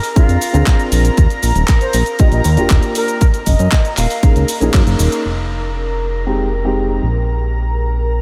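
A lush, warbling unison pad with chorus and sidechain pumping opens this cosmic, groovy nu-disco excerpt in F dorian at 118 BPM, alongside a tape-toned house kit of cabasa, handclaps and hi-hat re-recorded in a large room. A punchy, up-front electronic kick, a fat, detuned analog bass that pumps to the sidechain, a dark, boxy grand piano with tape echo, and a pure, straight-toned concert flute with delay sitting in the background arrive moments later, over chords moving from Bb7 through Ebmaj7 and Gb6 to Fm7. The band hits an accent at 4.7 seconds, the house kit stops at 5.2 seconds, and the pad, bass and piano carry on in a light digital ambience.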